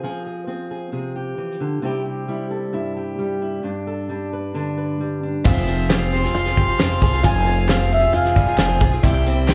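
A mellow, reedy accordion carries the melody from 6.1 seconds with slapback and tape echo. Before it, this uplifting, anthemic indie folk excerpt opens with a dark, up-front parlour steel-string guitar fingerpicked alone until the fuller arrangement arrives at about 5.5 seconds. There a boxy, bright archtop guitar, a woody, thumpy upright bass, a country drum kit with a punchy kick, a fat snare and dark cymbals, a plunky open-back banjo, a distant gut-string fiddle, a breathing harmonium and a grainy shaker all join, with hollow handclaps following shortly after, heard through a live club PA with small-room reverb.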